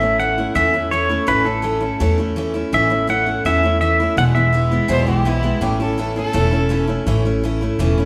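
A straight, steady four-beat pulse drives this sunny, nostalgic honky-tonk and classic country passage, cut from a longer piece. A picked jumbo acoustic guitar with fresh strings sits up front, full-bodied, with finger squeaks audible. A woody, thumpy upright bass, plucked on gut strings, anchors the low end with its dark tone. The electric pedal steel carries the melody from the start: bright, twangy and clean, played with fingerpicks and a slide, compressed and up front, with volume swells, until it stops at 5.0 seconds. A focused, close fiddle enters at 4.9 seconds with a brief bowed second line, a single clear voice with light vibrato. The harmony moves from A to E and back to A, and the band plays live together in one room, bathed in a wet studio reverb.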